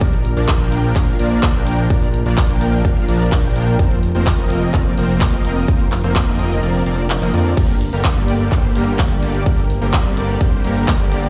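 From the first second, this emotional, powerful stretch of festival progressive house layers a huge, bright supersaw riff with tape echo over a thick, warbling vintage pad in the background and a fat, detuned analog bass, all three pumping against a punchy, up-front electronic kick, while an overdriven pop kit adds crash, ride, hi-hat and handclaps; the harmony moves from Bb to Fsus4 to Gm, the kick drops out from 6.6 to 7.6 seconds, and the whole mix rings through a big sound system in a bare stone room.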